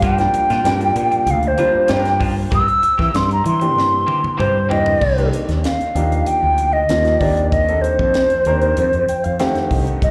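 Funky and driving, this electric jazz fusion clip moves at 96 BPM in a straight 4/4, with a hollow, close-miked silver flute carrying the melody up front, its tongued, vibrato-laced lines treated with slapback and tape echo, while a round, punchy fretless bass anchors the low end. A tight funk kit with a high-tuned snare plays a fill at 3.8 seconds, and a twangy, compressed electric guitar adds chorus-drenched stabs in the background until 4.9 seconds. A clear concert grand with deep bass comps through the harmony as it moves into C dorian, then closes with a fill at 8.8 seconds, all heard as a live club gig through the venue's PA with light reverb.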